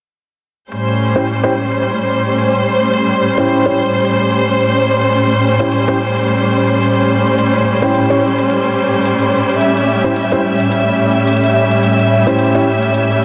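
Gritty and swaggering, this glitch hop cut from a longer piece moves at 108 BPM in 4/4 with a 58% swing on the sixteenths. A muted studio string section sits up front with sustained chords from 0.7 to 13.2 seconds, its con sordino tone veiled and lush, with vibrato, a soft attack and a smooth top, spanning A2 to E5. Electronic hi-hats stay in the background, crisp and layered under a low-pass filter and studio reverb, while a filter sweep runs over the drums. A dark baby grand piano adds boxy, short-sustain stabs between C#4 and C#5 from 1.2 seconds, softened by a low-pass filter and tape echo. The harmony opens on an A7#9 chord, and the whole passage plays as a single section set in moderate plate reverb and a small room ambience, with a dense, heavily limited modern master.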